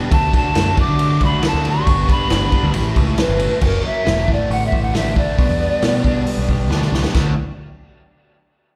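Heard as a live gig through the venue's PA with club reverb, this jangly, carefree indie rock excerpt in D major at 136 BPM carries a pure, tongued pan flute melody with vibrato and chiff over a bright, crunchy picked guitar riff, a background semi-hollow guitar riff thickened by chorus and tape echo, a growling overdriven bass, and an up-front acoustic kit played with bundle sticks and dark cymbals, while a very quiet, lush sawtooth string machine holds chords until 3.6 s and a drum fill arrives at 6.7 s.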